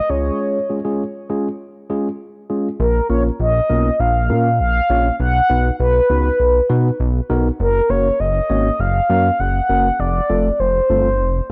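This synth-pop excerpt at 100 BPM in a straight 4/4 feels bright and upbeat. A horn-like synth lead carries the melody from 0.0 s, round and vintage in tone, with a soft attack, sustained notes, vibrato and a warbling chorus, plus tape echo, all sitting up front. A chorused synth bass sits equally forward, glossy and retro, blending pulse, sawtooth and triangle waves with pulse-width modulation, ring modulation, detuning, a filter sweep and a fast attack. A mellow tine electric piano plays clean, direct accompaniment further back in the mix. After an opening break on C#, a new section begins at 2.8 s and moves through A#m, B, F#add9 and F. The sound is dry and gritty, with cassette tape character and a light reverb.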